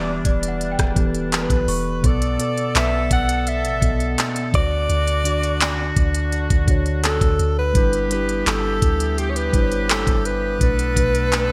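This excerpt of sensual, longing contemporary R&B moves at a relaxed 84 BPM in a straight 4/4, with a smooth electronic drum kit sitting up front from 0.2 seconds: a knocking kick, smooth hi-hats, handclaps and rim clicks, tape-warm in tone and cloaked in gated reverb from a large room. Beneath it, a soft 808-style bass hums deep and round, its sine-like notes striking quickly and then decaying into darkness. A mellow tine electric piano lays down clean, direct accompaniment through a B minor progression of Em7, Bm7, Dmaj7 and G6, while a woodwind section holds tight, gently vibrating chords with a soft attack in a classical manner. Over this, a clear alto saxophone carries the solo melody with punchy pop phrasing and vibrato. Tucked in the background, a worn celesta adds delicate, bell-like, slightly out-of-tune sparkle through a digital delay, all within a bright 1980s-style digital production with light reverb and studio ambience.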